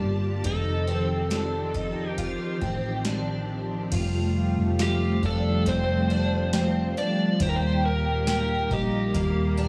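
A dark, overdriven slide guitar carries the melody from the outset, its fingerpicked lines trailed by tape echo, over sustained viola chords from a vintage string machine with a soft, sawtooth ensemble chorus. This is an ethereal, melancholic dream pop excerpt at 69 BPM in 4/4. A shimmering, octave-doubled twelve-string acoustic guitar picks arpeggios, with finger squeak audible, while a round, hollow-body short-scale bass holds the low end. A booming analog drum machine enters at 0.4 seconds with a deep kick, crisp snare, metallic hats, crash and tambourine, overdriven and re-recorded in a small room. At 3.9 seconds a slightly broken-up electric guitar joins in the background with tremolo and subtle chorus as the harmony moves from F7 to Fadd9 and then Eb. The sound is gritty, with transformer saturation, cassette tape character and light reverb.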